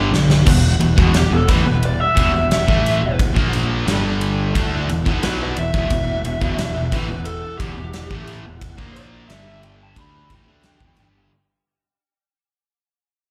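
Heard as a live club gig through the venue's PA with small-room reverb, this aggressive, heavy hard rock excerpt opens on a drum fill from a punchy gated 80s kit with a fat snare and bright cymbals up front, then fades out as a dark, lo-fi lead guitar through a small cranked amp solos from 1.2 seconds over riffs from a compressed distorted guitar, a sludgy overdriven guitar and a very quiet double-tracked third guitar, a growly fuzz fingered bass, and a smooth tonewheel organ holding chords through a slow rotary speaker in the background.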